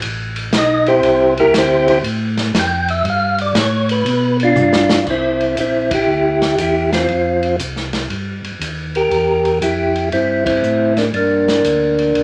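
Heard in a moderate large-studio reverb, this swinging, soulful soul jazz organ trio at 119 BPM in C mixolydian sets a round, lightly overdriven tonewheel organ bass with chorus vibrato and slow rotary speaker under an acoustic drum kit with dark cymbals, a tight kick and a rolled-off top, while an up-front, clean, percussive tonewheel organ, also through a slow rotary speaker, carries the melody from just after the start, and a drum fill at 4.6 seconds leads to band accents at 5.8 and 10.4 seconds.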